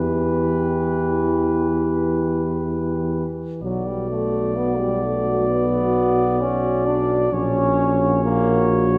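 Solemn and yearning, this hymn-like classical fragment for brass band moves at a slow, rubato 56-68 BPM in 4/4, shifting from E minor to B minor at 3.6 s and touching an F#/A# chord at 7.3 s, as a smooth-topped cornet carries the melody over a distant French horn section in the background, a very quiet euphonium with vibrato, a soft-attacked trombone and an up-front tuba with light vibrato, all bathed in the lush reverb of a concert hall.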